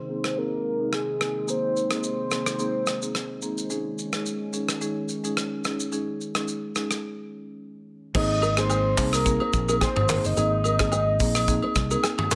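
A breezy, joyful afrobeats excerpt opens with a soft, round synth lead carrying the melody over woody, close-miked marimba and a smooth, slowly blooming analog pad with sidechain pumping under a filter sweep, as a polished studio drum kit with bright cymbals and a tight kick joins at 0.2 seconds; after a break, a punchy fingered electric bass and thumb-plucked nylon-string guitar with tape echo enter at 8.1 seconds, followed by agogo bells and woodblock at 8.2 seconds, all wrapped in light studio reverb.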